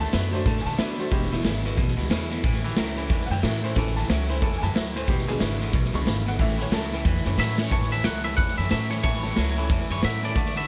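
Lightly reverberant and rollicking, this upbeat swung rockabilly excerpt opens on a jangly tack piano taking a honky-tonk solo over a gritty, up-front garage drum kit, a thumpy gut-string upright bass, a twangy electric guitar riff bathed in lush chorus and a boxy parlour acoustic guitar in the background, until a drum fill at 7.4 seconds brings in a second twangy electric guitar playing a high melody with tremolo and analog delay.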